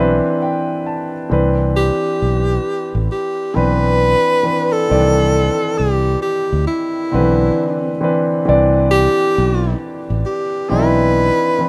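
This rough home demo mix has a light reverb and a sense of studio ambience, capturing a short cut from a longer R&B piece in C major. The mood is smooth and sensual, moving at a slow 67 BPM in 4/4 with a swung sixteenth-note feel. A concert grand piano plays a fill over a Cmaj9 chord during the first 1.3 seconds, its intimate tone carrying audible action noise, deep bass and long sustain as it goes on to accompany. A breathy tenor saxophone carries the melody in a jazz style, close-miked and clear with vibrato, sitting up front alongside the piano. Beneath them, a fretless electric bass adds a dark, round and directly amped low end before dropping out at 11.3 seconds, shortly ahead of the other two parts.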